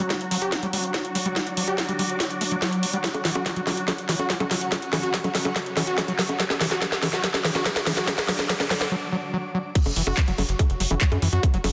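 Squelchy, gritty overdriven acid bass drives this hypnotic, intense psychedelic trance excerpt at 143 BPM, its distorted riff pumping against the sidechain and trailing dub echo, while an up-front drum kit of cracking snare, metallic hats, handclaps, bongos and crash pushes through a build-up with a background electronic kick. Behind them a bubbling, detuned stepped-filter texture holds chords over G5 and then F#5, a bright, blurred granular cloud pad evolves in the distance until 8.9 s, and a very quiet riser climbs from 5.7 s into a brief break. At 9.8 s the drop lands, and a moment later a tight, punchy sequencer bass enters, its sawtooth filter pluck driving under the dense, heavily limited mix and lush hall reverb.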